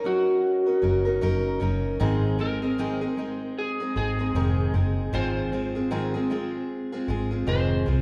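Bathed in the lush reverb of a church or concert hall, this carefree, easy-going acoustic pop fragment at 77 BPM with a gentle 16th-note swing carries a warm, slightly broken-up electric slide guitar melody played with fingerpicks over an up-front picked steel-string acoustic guitar with audible finger squeak and a dark, round, foam-muted vintage electric bass, all moving through Gb6, Ab and Fm7/Ab across its 8 seconds.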